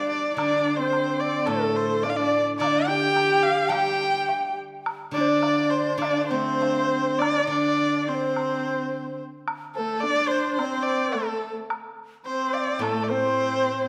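Tender and graceful, this fragment of a longer Chinese traditional chamber piece moves at 107 BPM in 4/4 with a rubato feel, led by an up-front, warm erhu singing with vibrato and portamento. A breathy, bright bamboo xiao sits in the background as a second line alongside a husky, expressive horsehead fiddle, while a silvery steel-string zither picked with fingerpicks rings underneath, dropping out at 9.2 seconds and returning at 12.8 seconds, and a close woodblock adds percussion in the background. A new passage begins at 7.2 seconds, and the whole ensemble sits in a spacious recital hall reverb.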